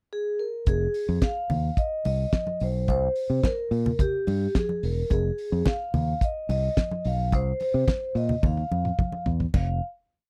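Glamorous and sultry, this short disco piece in F minor at 108 BPM opens with a mellow, ringing soft-mallet vibraphone pickup carrying a motif-based melody with slow motor vibrato, joined at 0.7 seconds by a round, punchy fingered electric bass playing a syncopated line with chromatic approach notes, a damped 70s drum kit with a fat snare, tight kick and dark cymbals driving a four-on-the-floor beat with open hats on the off-beats, and bright, thin-skinned congas slapping on two with open tones on four, all in a dry, close 1970s-style studio sound, before a drum fill at 8.4 seconds leads to a final note.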